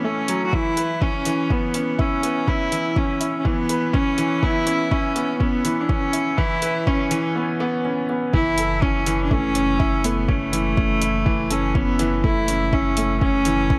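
Melancholic and hypnotic, this piano and strings electronica fragment pairs a rich, reedy cello melody with a clear, worn baby grand piano riff, both up front from the opening over F#m7 and C#m7/E harmony, while an overdriven electronic kick and hi-hat build toward a short break at 7.4 s. At 8.3 s the drop arrives as a round, nasal analog bass with a filter pluck and sidechain pumping joins the deep kick. A lush hall reverb surrounds the parts.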